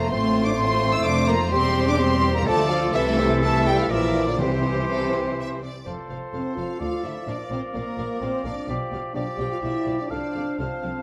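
In a straight 3/4 pulse at 126 BPM, this cheerful, spirited classical-period symphonic movement in F major sets a lush, dark violin section on the melody over second lines from bright clarinet, airy concert flute, a distant rich second violin section and vibrato-laden oboe, while a portamento-inflected viola section and roomy bassoon accompany, a present French horn section holds sustained chords, expressive double basses and warm cellos carry the bass, and close, dry timpani sound briefly from 4.4 to 5.1 seconds, all in a moderate recital-hall reverb with lossy compression artefacts.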